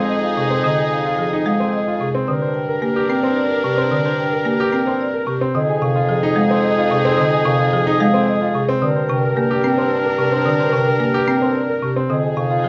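Classical minimalist pattern music in 3/4 with an urgent yet meditative mood, this excerpt circles between Fm7 and Gm chords. A soft-mallet vibraphone carries the ringing, metallic melody from 0.1 seconds, over clear grand piano arpeggios, a woody, percussive hard-mallet marimba accompaniment entering at 0.4 seconds, and smooth bowed violin chords with vibrato. A clear oboe sings a second line with light vibrato while a mellow, distant bassoon supplies the bass, all set in a moderate large studio reverb.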